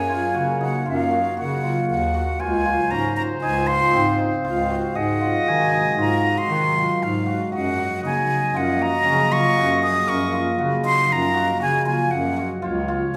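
A breathy, close-miked concert flute carries the melody up front until 12.5 s in this hypnotic, restless fragment of contemporary chamber music in 5/4 at 117 BPM. Around it, a clear, distant clarinet plays a second line, a shimmering, hammered cimbalom rings out arpeggios, and a soft-attack bass clarinet holds the bass. A mellow, detuned organ-like pad with ensemble chorus sustains chords from Gbmaj7 through Dbmaj7 and Ab7 to a closing Db at 12.6 s, with the whole ensemble heard in the wet reverb of a recital hall.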